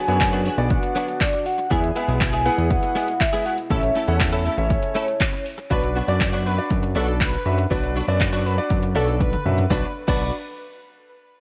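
A fat, detuned analog bass sits up front through this bittersweet, energetic dance-pop passage at 120 BPM in B dorian, its sidechain pumping driving the groove alongside a punchy analog drum machine with tape-warm kick, snare, handclaps, hi-hat, shaker, toms and crash cymbal. A velvety synth lead built from sawtooth, triangle and square waves with a sub octave carries the melody until 5.5 seconds, treated with chorus, tremolo and delay, before an airy, dreamy sine-based lead with a soft noise layer and vibrato takes over from 5.7 seconds. Beneath them, a concert grand piano with audible action noise and long sustain plays accompaniment, while a direct-recorded clean electric guitar picks a compressed riff washed in ensemble chorus. A mellow French horn section holds sustained chords in the background for the opening stretch, pumping with the sidechain, and a hollow, very quiet group handclap adds a vintage human touch. 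The chords move from Bm to E to A and back to Bm, a drum fill arrives just before the final section, and the whole mix carries light reverb and the worn, warbling pitch drift of old cassette tape.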